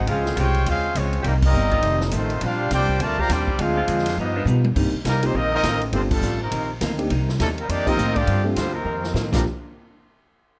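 A close, detailed recording with light reverb captures this joyful, brassy big band swing excerpt at 205 BPM in 4/4, with a light swing on the eighth notes. A tight, clear trumpet section carries the melody up front with a smooth top, while a bright trombone section plays a second line from further back, roomy and touched with vibrato. Underneath, a woody, thumpy pizzicato upright bass sits forward in the mix, and a clean, picked hollow-body archtop guitar comps quietly in the background. A vintage-toned saxophone section holds soft-attacked sustained chords until 4.4 seconds, and a dark, mellow upright piano with short sustain joins the accompaniment at 4.8 seconds. The drum kit sounds natural in its studio room, with a boomy kick, medium-tuned snare, ride, hi-hat, crash and toms marking band accents and fills. The harmony opens on Dbmaj7 and moves through a ii-V turn to Bb6/9, then circles between Cm7 and suspended F7 and G7 chords before landing back on Bb6/9.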